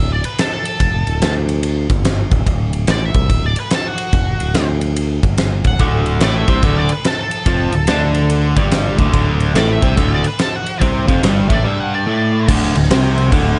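A dark, fuzzy octave-fuzz lead guitar with wah and distortion carries the melody over a growly, bright fingered bass and a huge, up-front arena drum kit with fat snare, punchy kick, crash and ride cymbals in this gritty, raunchy swung blues rock and southern rock fragment at 144 BPM, where a double-tracked, overdriven stack guitar crashes in with a picked riff at 5.8 seconds, the band hits a break at 11.6 seconds, and the D5 groove shifts to D7(no3) at 12.5 seconds, all in a dry sound.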